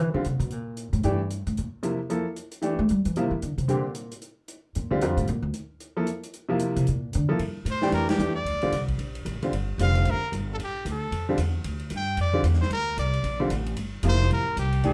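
A swinging 4/4 groove drives this intense, spiritual modal jazz excerpt, where a dark, woody pizzicato upright bass takes a solo up front over a bright upright piano with audible action noise and a distant, roomy big-band drum kit with a punchy kick and rolled-off top, until a brilliant, forceful trumpet with light vibrato, scooped notes and plate reverb enters at 7.7 seconds ahead of a band accent at 8.1 seconds, the whole group heard from further back in a wet club ambience.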